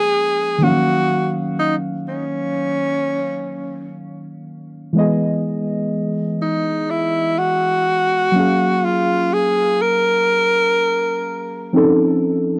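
A slow 4/4 pulse at 62 BPM carries a light 16th-note swing, setting a late-night, sensual R&B mood in E-flat minor. Muted, felt-like synth keys hold the accompaniment from start to finish, their dark, full-bodied tone blending triangle and sawtooth waves with a noise layer, a fast attack and a decaying tail, thickened by chorus. Over them, a breathy tenor saxophone carries the melody between Db4 and Bb4, playing in a jazz style with vibrato and subtone, close-miked and given a cassette-tape colour. The harmony moves from Bbm7 and Ebm9 through Emaj7 and Gbmaj9 before landing on F7b13 at 11.7 s, where the saxophone stops and the keys ring on alone until 12.6 s. Both parts sit up front in a moderate booth ambience, and the whole piece has the character of a home recording on cassette, heard here as a short cut from a longer work.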